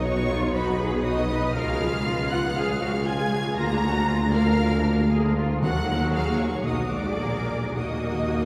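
A stormy, dramatic orchestral passage, cut from a longer classical piece, opens with high violins singing a lush, vibrato-rich melody over a second violin line, violas murmuring in the background, distant cellos, and a deep bass of double basses doubled by a mellow tuba, all moving with a flexible, rubato feel in 4/4. The harmony darkens through major chords and dominant sevenths before settling on the home minor chord at 5.6 seconds, when soft-mallet timpani enter with a round, close and very quiet tone. The timpani add a brief fill from 7.8 seconds, and the whole ensemble sits far back in a cavernous cathedral reverb.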